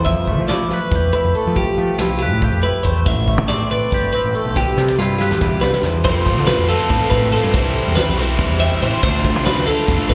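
A bright, compressed twelve-string electric guitar rings out up front with clean arpeggios through analog delay in this wistful, playful math rock and midwest emo excerpt at 281 BPM in 7/8, joined by a twangy electric guitar with chorus and slapback that drops out at 6.1 seconds, a growling overdriven bass, and a distant, roomy brush kit with dark cymbals and a fat snare whose fill hands off to a double-tracked overdriven guitar riff from 6.0 seconds, the whole captured as a live gig through the venue's PA with recital hall reverb over chords such as Fmaj9#11, Am9 and Cmaj9.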